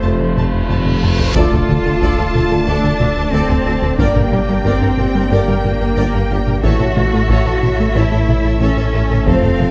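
Vast and brooding, this cinematic cut from a longer hybrid orchestral and electronic film score moves at 91 BPM in a straight 4/4 in D minor, the harmony shifting from F to Dm, Gm and then A. A reverse cymbal rises from the start, the taiko ensemble enters at 0.4 s with heavy sticks and a close, dry sound, and an electronic impact lands at 1.4 s as the main section opens. Lush bowed strings carry the piece: a rich violin section takes the melody with focused vibrato, a second, more distant violin line and clear violas sit in the background, while smooth, even cellos and very quiet, expressive double basses anchor the low register. Very quiet French horns and tight, close-miked trombones hold sustained chords alongside a detuned sawtooth pad treated with chorus, and a mellow, soft-attacked tuba adds weight to the deep end. Underneath, a pure sine sub bass and a rubbery, nasal square-wave riff with a bouncy filter pluck give the low end an electronic pulse. 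The dark, warm production places the ensemble in a moderate scoring-stage reverb.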